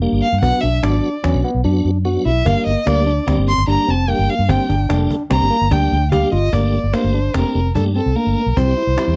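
A piping tonewheel organ with key click, chorus vibrato and fast rotary speaker opens this brooding, intricate progressive instrumental together with clean tine electric piano arpeggios, a round, foam-muted electric bass up front and a snappy cajon played with soft hands, all moving in a straight 5/4 at 148 BPM in G minor. From 0.2 seconds a single bowed violin carries an expressive solo melody with vibrato, portamento and a smooth top, riding over shifts from Bm to Gm before the harmony moves to Gmadd9 at 6.5 seconds and closes on C. The sound is dry and close, like a 1970s studio session, and the passage is cut from a longer piece.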